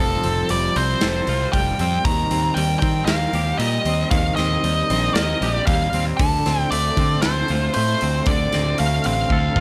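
A dark, nasal lead guitar with a parked wah and overdrive carries the melody up front in this cathartic, angsty stretch of quiet-loud alternative rock at 116 BPM in 4/4, felt in half time. Beneath it, a bright, clean, twangy electric guitar picks arpeggios through tremolo while a fuzzy, overdriven picked bass sits prominently in the mix. A big-room acoustic rock kit with punchy kick, medium-tuned snare and hi-hat enters at 0.2 seconds and closes with a fill at 9.3 seconds, as the chords move from Fadd9 to Eb6 to Dm7 under light reverb in this short cut from a longer piece.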